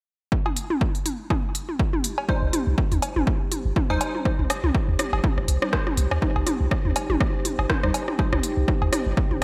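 A swung sixteenth-note groove in four drives this hypnotic, clinical minimal techno excerpt, opening at 0.3 seconds with a punchy analog kick that sits up front, overdriven and carrying the sound of a large room. A layered, overdriven techno kit of cowbell, rim click and toms, treated with tape echo, joins alongside a tape-warm minimal click kit of clicky hi-hats and rim clicks heard in a small room. A moody sawtooth-and-sine pad with a sub octave and slow attack blooms in, its chorus and built-in reverb lending a dark haze while sidechain pumping makes it breathe. From 2.3 seconds a crisp, detuned wavetable chord stab arrives with tape echo, and a deep sine sub bass with a pitch-drop attack follows, also pumping under the sidechain. At 4.3 seconds a second section begins as a filter sweep runs across the stab, which drops out before the close, the mix sitting in a light digital ambience.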